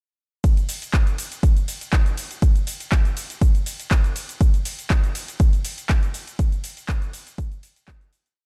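House drums at 121 BPM with a light 16th-note swing, relaxed and warm in mood, built from two overdriven electronic parts re-recorded in a large room yet carrying little reverb. An up-front, deep electronic kick pounds four-on-the-floor from 0.4 to 8.0 seconds, while a quieter deep house kit adds handclaps, shaker, ride and metallic closed and open hi-hats on a programmed backbeat. The whole short piece is a single drop that begins fading out at 5.7 seconds and ends at 8.4 seconds.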